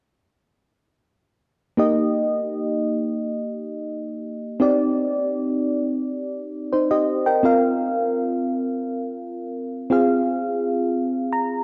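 A mellow FM electric piano enters at 1.8 s in this glossy, nostalgic pop fragment, its soft, round tones sitting up front with a quick attack that decays under a chorus effect and a noise layer. The piano plays accompaniment through a progression of Eb, Cmadd9, Bbsus2 and Fm, adding a short fill from 11.0 s. A lush plate reverb and dark production give the sound a hazy depth.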